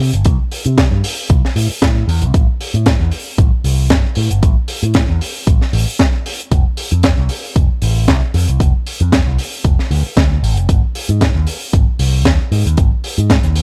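A dry, gritty hardware sound with little room in it frames this short nu-disco cut, taken from a longer piece and running about 13.6 seconds. At 115 BPM in 4/4 with a light 54% swing on the sixteenths, it feels sunny and feel-good from start to finish. A picked electric bass opens at 0.0 s, warm, amped and up front, shaped by an envelope filter as it moves between F1 and C3. A tight, acoustic funk kit joins almost at once with hi-hat and a high-tuned snare, while a punchy, layered electronic kick with a tape-warm edge arrives at 0.3 s. Both drum parts sit forward in the mix with a touch of studio reverb, and the whole passage stays in one steady groove.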